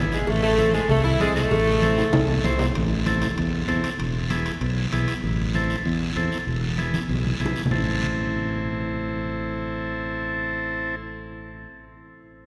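An edgy saxophone section with light vibrato leads this fiery, passionate cumbia excerpt at 194 BPM in A harmonic minor. It plays up front only until 2.4 s, over a buzzy vintage combo organ and a growly, up-front fingered electric bass as the harmony moves between Am and E. A raspy guiro, very quiet low-tuned congas with a thick, damped skin, and ringing cowbell and timbales in the background carry the straight 4/4 groove; the cowbell and timbales stop at 5.2 s and the guiro and congas at 7.8 s, all inside a long cathedral reverb that gives the cut a resonant, hall-like sheen.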